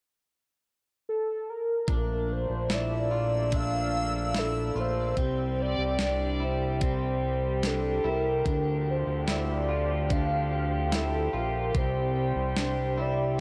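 Bathed in a lush hall reverb, this ethereal, blissful dream pop excerpt in Bb lydian drifts at 73 BPM, opening with a velvety, detuned synth lead carrying the melody from 1.1 s through chorus and tape echo. At 1.9 s the rest arrives over chords moving from Bbmaj7 through C and Dmadd9: a fat, nasal analog bass sits up front, stopped French horns hold mellow, metallic sustained chords, and a slightly broken-up electric guitar picks arpeggios through lush chorus and tape echo. A crisp, overdriven 8-bit drum machine with a thumpy kick drives the groove, while a reversed, granular swelling texture glimmers brightly between 3.1 and 5.5 s.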